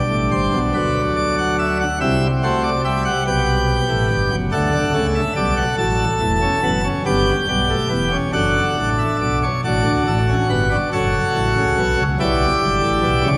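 A full pipe organ plenum, brilliant with mixtures, crisp baroque chiff and heard up front, plays alone across a span from E1 to A5 in this elegant, stately fragment of a baroque-style four-part fugue in a straight 6/8, tuned to A4 = 442 Hz, moving into a new section at 9.6 s and bathed in a 2.8-second church reverb.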